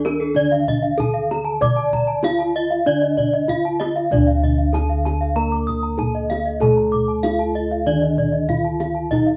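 Brilliant and hypnotic, this excerpt of Balinese gamelan in D pelog moves at a straight 96 BPM in 4/4, with a ringing bronze metallophone carrying the melody while two more metallophones spin arpeggios, one of them paired-tuned so that it produces shimmering beats, a tight kendang played with soft hands, up-front bossed gongs giving a round, mellow bass, and a lower metallophone accompaniment entering at 4.1 seconds, all captured live in one room with moderate reverb.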